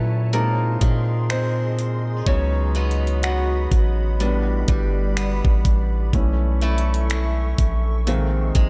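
A clear, intimate grand piano with audible action noise takes the lead in this moody, late-night contemporary R&B piece at 62 BPM with a swung sixteenth feel, moving through A#9sus4, C#9sus4, A9sus4 and B9sus4 chords over a deep, up-front 808-style sine bass, a glassy, warbling FM pad with ensemble chorus and its own reverb, a boxy picked acoustic guitar playing arpeggios through delay with finger squeak, and a produced electronic drum kit of knocking kick, metallic hi-hat and finger snaps that enters at 0.3 seconds, all in a dry sound.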